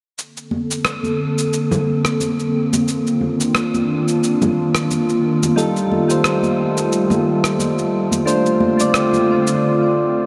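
This relaxed sunset chillout excerpt moves at 89 BPM in 4/4 with a gentle 16th-note swing, set in Bb major over a slow progression of Bbmaj9, Cm11, F9 and Dm7. A gritty, tape-tinged electronic cabasa and rim click carry the beat in a small room ambience, joined by high-tuned congas with a thick skin, played with soft hands and sitting in the background. Up front, an airy, breathy pad with a detuned, warbling vintage tone and a noise layer holds sustained chords with chorus, under a filter sweep that runs the whole length. At 5.6 seconds, round, mellow electric-piano-like synth keys enter with chorus, tremolo and delay. The dreamy mix is soaked in a cathedral reverb, giving the smooth mood a floating, hazy glow.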